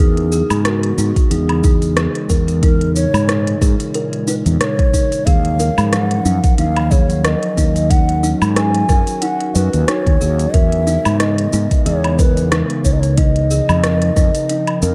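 A dark, lightly reverberant production carries this meditative, earthy organic downtempo excerpt, where a breathy, hollow low ney sings the tape-echoed melody over a warbling, detuned lo-fi pad with chorus and sidechain pumping in the background, while a woody kalimba rings out gritty 12-bit arpeggios through digital delay, a round, punchy fretless bass pumps up front, crisp hi-hats, rim clicks, shaker and woodblock from an organic electronic kit enter at 0.2 seconds, and a deep electronic kick joins at 1.2 seconds.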